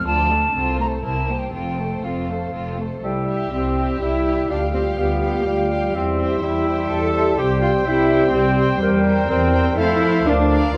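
In a quick, straight 3/4 at 124 BPM, this spirited, cheerful classical-period orchestral movement opens in F major with muted, con sordino strings: violins carry the melody while a second violin line, a viola accompaniment, and cello and double bass underneath (the basses sitting up front) give a veiled, dark blend, joined by an airy, crisp-edged silver flute on a second line. At 3.0 s the music moves into C major as clarinet, oboe and bassoon enter with classical-style lines and a mellow French horn section holds sustained chords in the background. A moderate scoring-stage reverb gives the whole fragment a roomy glow.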